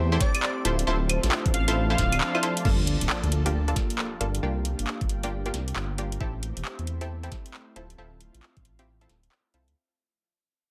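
A breathy, sidechain-pumped pad, a blurred, evolving granular cloud pad and a dark, rumbling detuned saw bass up front open this skippy, late-night two-step UK garage cut at 135 BPM, while punchy chorused chord stabs with dub echo, a dreamy lead that sings only until 2.5 seconds, a knocking electronic kick and a garage kit of woody snare, metallic hats, claves, handclaps and crash fill out the swung groove, and a background sub drop lands at 2.7 seconds as the track fades out from 2.6 seconds.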